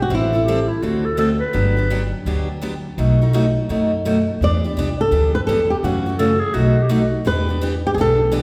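Acoustic string swing in the jazz manouche style, this swinging, virtuosic piece is cut from a longer performance in E minor at 168 BPM in 4/4, tuned slightly sharp to A4 = 445 Hz. A bright, boxy parlour steel-string guitar sits up front with picked accompaniment throughout, while a pizzicato upright bass on gut strings adds a woody, thumpy pulse underneath. A fingerpicked flamenco guitar with fresh strings carries the melody, sounding briefly at the start and returning at 4.4 seconds to lead through to the close. A raspy, growling clarinet with light vibrato weaves a gritty jazz second line, first entering at 0.5 seconds and again later on. The changes move from Am7 through D7 and Gmaj7 to B7 before settling on Em7, and the players are framed by the lingering reverb of a church or concert hall.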